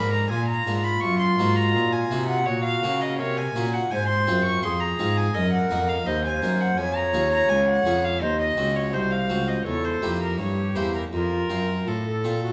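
A solemn, flowing baroque-style sonata movement in 4/4 opens with all four players together at 83 BPM: a nasal, gut-strung violin carries the melody up front, while a bright wooden flute with a pure, straight tone and crisp attack weaves an expressive second line. Beneath them a close-miked, dry Flemish harpsichord with two sets of strings fills in the accompaniment, and a single bowed cello with light vibrato and a reedy period tone anchors the bass. The moderate recital-hall reverb lends the 12.5-second passage, cut from a longer piece, a measured glow as the harmony moves from Bb7 through darker minor and diminished chords before settling on F.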